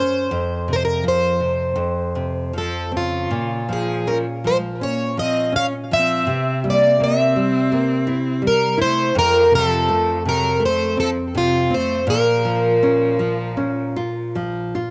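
Recorded at home onto cassette in a small, wet booth, this short cut from a longer fado-style ballad has a tape-softened, intimate sound. In Bb minor at 82 BPM in 4/4 but played with a rubato feel, the mood is passionate and mournful as the harmony moves through Bbm, C7 and F. A picked, plugged-in twelve-string dreadnought acoustic guitar carries the melody up front, its octave-doubled strings bright and shimmering, with plate reverb and analog delay trailing the notes until 14.3 seconds. Beneath it a fingerpicked classical nylon-string guitar, also up front, provides the accompaniment in a lower register through to 14.9 seconds. From 2.6 seconds a single bowed cello adds a clear, focused second line with vibrato, sitting further back in the mix.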